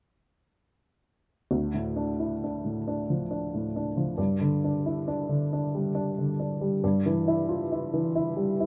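Lightly reverberant and intimate, this short fragment of reflective, melancholic neoclassical minimalist piano in D minor drifts at a rubato 68 BPM in 3/4, as a worn, woody, slightly detuned upright piano sits up front and plays alone from 1.5 to 8.7 seconds between D2 and F4, moving through Dm, G5 and Em/G.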